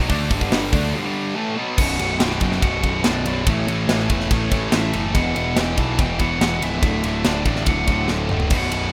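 Epic and aggressive, this heavy metal excerpt from a longer piece drives on a rough home-demo sound, with a tight, polished acoustic drum kit up front with bright cymbals, a growly, punchy overdriven fuzz bass, two bright high-gain distorted rhythm guitars in the background and a very quiet double-tracked fuzz guitar, the three guitars riffing together, a break at 0.9 seconds, a distorted lead guitar melody entering at 1.8 seconds, and a drum fill at 8.1 seconds, all in a small, moderately reverberant room.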